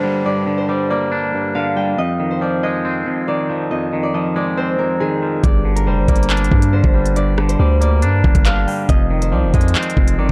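This short cut from a longer track has a dark, warm production set in a digital ambience. It is an ominous, tense drill beat at 139 BPM in 4/4 with a half-time feel, in G phrygian, moving between Gm and Fm7. A fingerpicked concert harp carries the ringing acoustic melody through a digital delay. Beneath it, an up-front, clean, twangy electric guitar plays the accompaniment through spring reverb. A background downlifter sweeps through the opening until 2.0 seconds. At 5.4 seconds the drill kit arrives with a knocking kick, crisp hi-hats, handclaps and rim clicks, alongside a deep, sine-toned 808 bass whose long notes hit with a fast attack and then decay.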